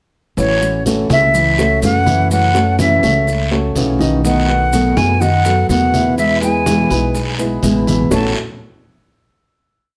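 Warm and relaxed, this short, complete Cuban son and guajira piece moves in a straight four-four feel through a single verse before settling on a final chord at 8.1 seconds. An up-front silver concert flute carries a motif-based melody of call phrases, its airy, metallic tone tongued and colored with an unsteady vibrato. Beneath it, a nylon-string guitar blends fingerpicked, classical-style playing with strumming and muted slaps, while a dark, mellow baby grand piano plays a montuno in octaves. The upright bass, woody and thumpy on gut strings, plucks a tumbao line that anticipates the chords. Very quiet, distant low-tuned congas with thick skins offer soft slaps and open strokes, joined by a raspy guiro and grainy maracas in the background, the whole ensemble sitting in a moderate studio reverb.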